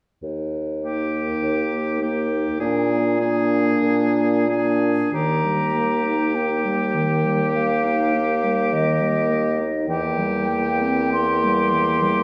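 Classical slow romantic wind-quintet music, tender and freely paced, in which a dark bassoon opens the bass at 0.2 s, a bright oboe with light vibrato, a soft-attacked mellow clarinet and a French horn with gentle vibrato join at 0.8 s, and a pure, straight-toned, tongued concert flute takes up the melody at 5.1 s, all set back in a reverberant recital hall.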